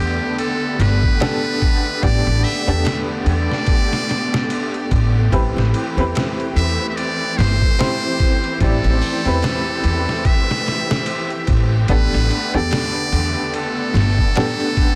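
Trip hop at a slow 73 BPM with a swung sixteenth feel, cinematic and hypnotic, cut from a longer piece and moving from Gadd9 to Am7 and back. A buzzy, thin metal-muted trumpet carries the melody with scooped notes, light vibrato and tape echo over a worn, slightly detuned upright piano with tremolo and lush, bowed symphonic strings holding sustained chords. An up-front, woody pizzicato upright bass anchors the low end until 14.2 seconds, while a gritty, pitched-down sampler-style drum kit with a thumpy kick, ride cymbal, hi-hat and softly clipped snare enters at 0.4 seconds, all in a dry, dense, heavily limited modern master.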